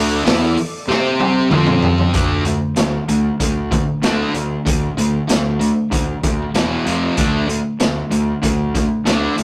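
A raw garage drum kit, punchy in the kick and gritty with a rolled-off top, sits up front from 0.3 s, rolling through a fill before the heavy, driving hard rock groove settles in at 2.1 s, at 96 BPM in D minor. A bright, distorted electric guitar and a darker, overdriven semi-hollow guitar in the background play the riff over D5, C5, F5 and E5 power chords, and a growly, fuzz-soaked fingered bass anchors the low end. A very quiet, breathy pad holds soft sustained chords only through the opening, all captured in a rough rehearsal-room sound with tube saturation and light reverb in this short cut from a longer piece.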